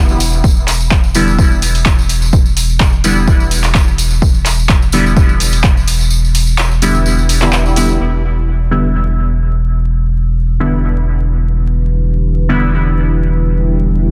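This dub techno excerpt has a meditative, hazy mood, set in 4/4 with a light swing on the sixteenths. A deep, round sub bass built from triangle and square waves runs throughout, pumping against the sidechain and sitting up front. A jingly acoustic tambourine enters first, quickly followed by a punchy, tape-warm analog drum machine with handclaps and hi-hat and then an electronic kick drum re-recorded in a small room, and the kick drops out at 6.1 seconds. Juicy, resonant polysynth stabs with a filter sweep run from 1.1 to 12.6 seconds, coated in chorus, phaser and dub echo. At 8.0 seconds the harmony settles on Em7, and a moody, detuned ambient pad with slow attack, wave-folding and ring modulation arrives at 11.1 seconds, drenched in chorus and its own reverb under a filter sweep. The dense, heavily limited master carries a layer of vinyl crackle and stays dry overall.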